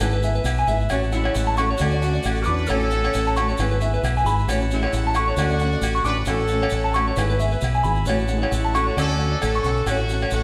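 Danceable and carefree, this short highlife guitar band passage moves at 134 BPM in 4/4 with a light swing on the sixteenths, set in A major and cut from a longer piece. A round, dark fingered electric bass sits up front, while a clean, picked electric guitar plays warm arpeggios high in its range and a small, fingerpicked nylon-string guitar adds accompaniment in the background. A vintage, buzzy combo organ holds sustained chords behind them, and ringing agogo bells and grainy, mellow maracas keep the percussion going. At 1.1 seconds a warm horn section enters with the melody, playing as a present, pop-style ensemble with light vibrato. The harmony cycles through E/G#, A6 and Dmaj7, and the band sounds as if it is playing live in one room, bathed in a wet stone-room reverb.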